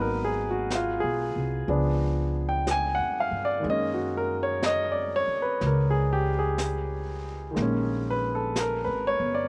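A warm, up-front baby grand piano with a slapback echo and a woody, thumpy pizzicato upright bass on gut strings open this tender, late-night jazz ballad fragment in F# major at a slow 61 BPM with a swung feel, moving through G#m7, C#7b9 and F#69 while a dark, smooth brush kit with a high-tuned snare and hi-hat enters at 0.7 seconds, all in a dry, outdoor sound with a soft-edged top.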